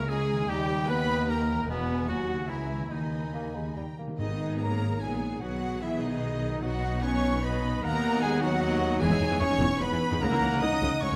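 In a rubato 3/4 at 149 BPM, this restless, stormy classical fragment in G# minor sets a lush, vibrato-laden violin section on the melody over a clear clarinet, a distant second violin section and an airy flute section, while a bright viola section, close-miked French horns holding sustained chords, ringing thumb-plucked harp arpeggios and smooth cello and double bass sections fill out the background. Very quiet hard-mallet timpani enter at 2.9 seconds and play a brief fill between 3.8 and 4.2 seconds, a mellow bassoon appears fleetingly, and a soft-attack trumpet adds stabs from 4.2 seconds, all in a moderate concert hall reverb.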